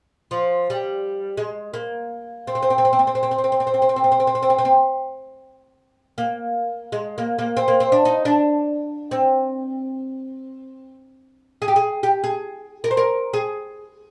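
A bright, woody oud recorded up front in a lively studio room carries a longing, soulful Arabic melody in free time, its plectrum-plucked double strings ringing fretless and acoustic from 0.3 seconds until this cut from a longer piece ends at 14.1 seconds.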